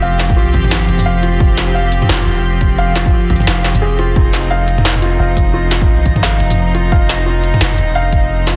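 A swung, half-time drum and bass groove drives this dark, cinematic excerpt, with a heavy, tape-warm electronic kick from 0.3 seconds and an up-front industrial kit of clanging snare, crisp hats, shaker and toms from 0.2 seconds, both re-recorded in a large room. Beneath them a deep, sine-toned 808-style bass sustains long, decaying notes, while a distant, earthy chamber string section holds bowed chords with light vibrato, roughened by vintage 12-bit sampler grit and pumping against the sidechain. A soft, felt-muted upright piano plays intimate arpeggios through a digital delay over one unchanging chord, and the mix is pressed into a dense, heavily limited modern master with little reverb.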